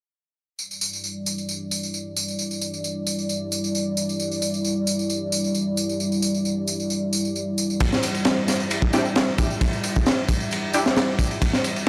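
A dry, gritty hardware sound with light studio ambience frames this energetic, funky breakbeat excerpt at 133 BPM in E minor, where a deep, moody analog pad holds an Em7 chord with chorus, 12-bit grit, sidechain pumping and a filter sweep alongside a tape-toned tambourine from 0.6 seconds, before a crunchy, saturated breakbeat kit with a tight kick, high-tuned snare and dark ride enters up front at 7.8 seconds and a bold, bright orchestra-hit-like synth stab with tape echo cuts in at 8.9 seconds.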